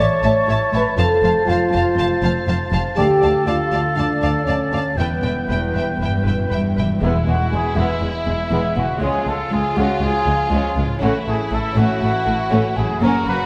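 Triumphant and adventurous, this cinematic excerpt at 120 BPM in 4/4 sets a clear, focused violin melody over lush strings, airy hollow flute, oboe and soft-attack clarinet lines, mellow French horn chords, a ringing thumb-plucked harp, and deep double bass and cello, until the music settles into E major at 7.0 s, where bright trumpet stabs and a round timpani stroke join under a wet scoring-stage reverb.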